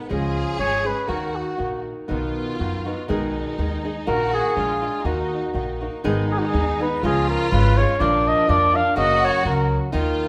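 A mellow, vintage-toned solo trumpet sings the melody up front in this dramatic, passionate mariachi folk piece, phrasing from 0.1 to 1.9 seconds and returning at 4.1 seconds, over a bright, fingerpicked flamenco guitar with audible finger squeak, a woody, thumpy pizzicato upright bass, and a rich, distant bowed violin section with vibrato carrying a second line, all in a lightly swung 2/4 and set in a moderate scoring-stage reverb in this fragment cut from a longer piece.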